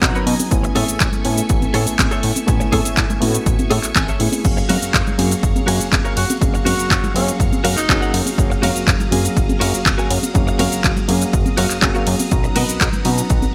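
Sunny and feel-good, this nu-disco excerpt moves at 122 BPM in F# major, with a punchy, tape-warm electronic kick and an up-front house kit of claps, hats, shaker, ride and crash alongside a fat, nasal, detuned analog bass, while small-room congas sit in the background. A reedy electric piano with fast tremolo and delay, a lush vintage string machine pumping under its ensemble chorus, and a bright, compressed clean guitar riff with chorus and delay and short fills at 0.0 and 3.7 seconds circle through Bmaj7, Amaj7 and F#maj7. A breathy tenor saxophone with light vibrato slips in a brief delayed phrase at 6.2 seconds, all framed by light reverb and a bright 1980s-style digital sheen.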